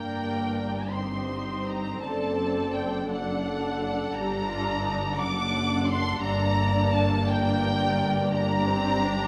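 Warm and serene, this slow romantic movement for string orchestra sways in a rubato 6/8 at 57 BPM in G minor, its harmony passing from G minor through Eb6/G and D7/F# before returning home. Muted violins sing a lush, veiled melody up front between F#5 and D6, joined con sordino for the full 9.3 seconds by a distant second violin line, smooth-topped violas, dark cellos with light vibrato and warm double basses reaching down to F#1. Every section bows with a gentle attack, and a reverberant scoring-stage ambience with a 1.9-second decay surrounds this fragment of a longer piece.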